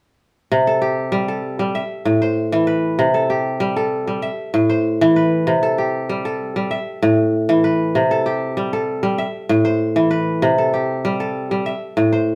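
A straight 4/4 pulse at 97 BPM carries this joyful, hypnotic slice of West African traditional music, cut from a longer piece and running from 0.5 to 12.3 seconds. A lone acoustic kora plays solo throughout, fingerpicked and sitting up front, its ringing, crisp strings spanning A2 to E5. The harmony cycles patiently in C major between C5 and A minor chords, with a brief turn to A5, and the repetition gives the passage its trance-like pull. The tuning sits at A4 = 439 Hz, lending the instrument a faint distance from standard pitch. A moderate, large studio reverb of about 0.9 seconds surrounds the kora, capturing the natural feel of a live performance in one room.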